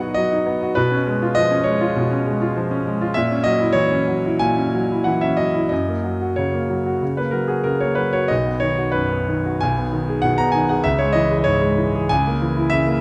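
Flexible rubato pacing in four gives this romantic character piece for solo piano a warm, hopeful lilt, the line breathing freely across a short section cut from a longer work. A clear concert grand, smooth and vintage in tone with a deep bass, sits up front and spans a broad register, moving through rich harmonies such as C#7/B, F#7/A# and a closing A#dim/C# at 12.1 seconds. The instrument rings within a wet recital hall, its reverb adding a gentle glow around every phrase.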